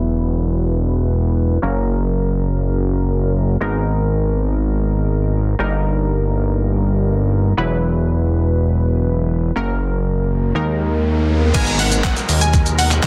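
Energetic and driving, this dance-pop excerpt opens on a funky, punchy polysynth comp with chorus, its sawtooth tone opening up under a long filter sweep, while a fat, detuned analog bass sits up front beneath it, both breathing with sidechain pumping. The chords move through a minor-key progression built on suspended and added-ninth colours, which keeps the build restless. At 10.3 s a riser and downlifter creep in from the background, tightening the tension. The drop lands at 11.5 s, where a detuned 8-bit digital drum machine bursts in with a thumpy kick, medium-tuned snare, handclaps, hi-hat, shaker and crash, its tape-warm, sampler-style sound placed close and present. Alongside it, a catchy, bright unison lead with phaser plays sustained high notes, and an evolving supersaw swell spreads sustained chords softly behind. The dense, heavily limited master sits in digital ambience, giving the whole drop a loud, modern punch.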